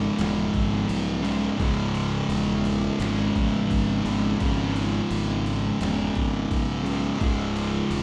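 Two thick fuzz guitars and a fuzz-driven fingered bass open this 8-second cut from a longer stoner and doom metal piece, settling into a sludgy, heavy riff on a C# minor chord at 86 BPM in a straight 4/4. Both guitars sit up front with picked, distorted tone, one darker and the other warmer, their riff moving between C#2 and C#3. Beneath them, the electric bass is overdriven, round and punchy, played fingered low between C#1 and B1, with a direct-and-amped character. At 0.2 seconds a trip hop sampler-style drum kit joins with crash cymbal, a thumpy kick and a medium-tuned snare, its sound compressed, pitched down, gritty and tape-warm. The band plays together in one room under a moderate studio reverb of about 0.6 seconds, tuned slightly below standard pitch at A4 = 439 Hz.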